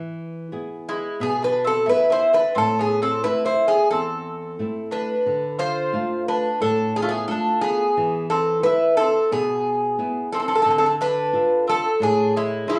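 A fingerpicked flamenco guitar with audible finger squeak opens alone before a metallic, partly octave-doubled Greek bouzouki takes the melody up front at 0.9 s alongside a round, double-strung mandolin second line, giving this bittersweet, moody Greek folk piece at 89 BPM in a straight 4/4 the feel of a small band playing live in one room, with a short small-room reverb as it moves from E and Am to Dm in its second section at 5.3 s before being cut off mid-piece.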